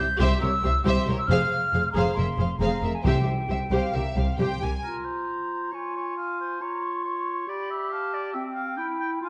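In a straight 4/4 pulse at 136 BPM, this cinematic passage in F harmonic minor, cut from a longer piece, carries a determined, swashbuckling mood. It opens with a lush, bowed string section: violins carry an expressive melody with vibrato and a smooth top, a second violin line and a focused viola section fill the middle, and cellos and woody double basses anchor the bass. A hollow, pure concert flute runs a second line above the strings throughout, and timpani struck with hard mallets sound a crisp, close accent at 3.0 seconds. At 4.8 seconds the strings fall away, and a clear clarinet and an oboe with light vibrato take up second lines beside the flute, sounding distant and roomy yet up front. The harmony moves from C and F minor into a progression through Db and Bb minor over F, then G7, resolving on C. A wet recital hall reverb and a dark production give the whole piece a rich, enveloping sound.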